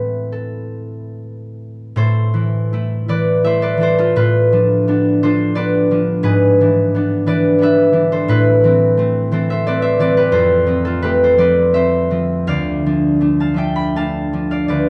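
A solo concert harp opens this gentle, wistful classical excerpt in A minor, fingerpicked and ringing up front across a range from D2 to B5. Moving in a rubato 3/4 at roughly 72-89 BPM, it travels from Am through Bm7b5/A and E7/G# back to Am, then on to F and Dm by 12.5 seconds. Light reverb and a dark, warm production surround the acoustic instrument.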